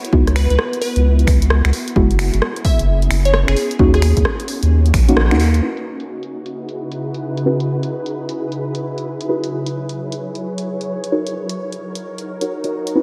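UK garage in a two-step swing at 131 BPM, this soulful, bouncy cut in C# dorian sets an ethereal, detuned pad pumping behind warbling, dark chord stabs, a punchy kick that drops out at 5.1 seconds and a saturated sub bass that follows at 5.6, a glassy pluck melody, and a tape-flavoured drum machine of snaps, hi-hats and rim clicks, all steeped in a dreamy hall reverb as C#m11, F#9sus4 and D#m7 cycle beneath filter sweeps on the stabs, drums and pad.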